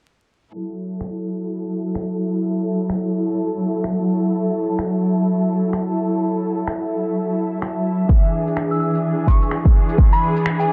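This future garage excerpt moves at 127 BPM in 4/4, its sixteenths swung at 61%, with tape-warm electronic finger snaps and shaker entering at 1.0 seconds, filtered and softly clipped on the snare. The mood is wistful and ghostly in F# minor, built on a rich symphonic string section that holds sustained chords from 0.5 seconds, bowed with light vibrato, biting and intense, pumping against a sidechain and carried through a filter sweep. Behind it, a reversed, detuned granular texture swells dreamily in the background with its own reverb. At 8.1 seconds the harmony shifts from F#m7 to E7 as a deep, layered electronic kick lands up front, playing until 10.1 seconds. A soft, pure FM bell then enters at 8.7 seconds with a gentle, mellow tone, shimmering through chorus, phaser and tape echo. The dense, heavily limited master carries light reverb, a filtered haze and a layer of vinyl crackle.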